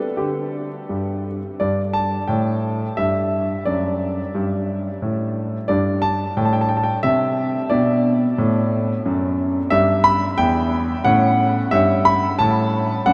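A classical-period piano sonatina in G major at 89 BPM in 3/4, elegant and cheerful, this short excerpt cut from a longer piece features a solo concert grand piano with a smooth, vintage tone, deep bass and short sustain, sitting up front across its E2 to B5 range from 0.0 to 13.1 seconds, bathed in a huge, wet reverb that suggests a vast, echoing space as it moves through chords such as D/F#, Bm7, Em7/G and A7/G.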